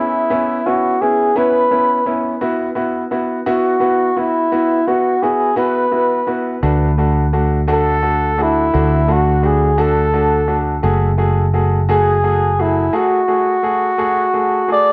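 Dramatic and melancholic, this slow 6/8 pop excerpt in F# minor at 57 BPM sets a warm, roomy flugelhorn melody with cassette tape grain and analog delay over a bright, polished concert grand piano accompaniment, while a round, dark fretless electric bass joins from 6.6 to 12.9 seconds as chords move from C#m7 through Esus2 and D to F#madd9, all in a small room with spring reverb on a home cassette recording.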